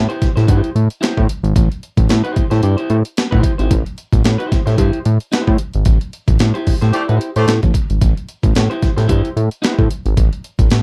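Cool and funky, this short cut from a longer funk piece rides a swung sixteenth-note feel in common time, all resting on a single Am7 chord. A fat analog bass sits up front from the opening at 0.0 seconds, its thick, detuned sawtooth tone blended with sine and wave-folded colour, with a fast attack, sustained notes and a filter sweep. A breakbeat sampler-style kit of hi-hat, thumpy kick and medium-tuned snare sounds gritty and compressed, overdriven and re-recorded in a small room. Alongside them, an electric guitar at the edge of break-up plays picked, compressed accompaniment with a slightly broken-up edge. A band accent lands at 5.9 seconds, and within it a horn section with light vibrato and a roomy, pop-style ensemble sound adds a brief second line from 6.9 seconds. The recording is dry and close, with little reverb, in the manner of a 1970s studio.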